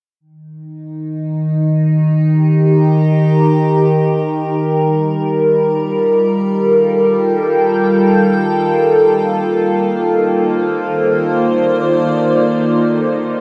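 Ambient music in free time and E-flat Lydian, peaceful and luminous, cut from a longer piece and moving through Eb, Gm7 and Bbmaj7 chords. An evolving, morphing wavetable pad sits up front with slow-attack sustained chords, its shimmer shaped by chorus and phaser, while a string-like, tense, bright bowed-like drone with vibrato and a noise layer fades in from 0.2 seconds in the background. Both parts sound from 0.9 to 13.4 seconds, bathed in a huge, wet reverb with a 6.9-second decay.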